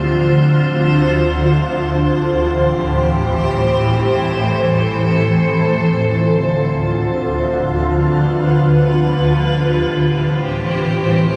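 Hip hop in free time and D dorian, tuned to A4 = 441 Hz: this hazy, spacious fragment is a solo granular cloud pad, placed up front and spanning D2 to C5, whose cloudy, detuned, wave-folded sustain, slow attack and long release, colored by its built-in reverb and phaser, drift between Dm7 and Am7 for 11.4 seconds inside a moderate shimmer reverb.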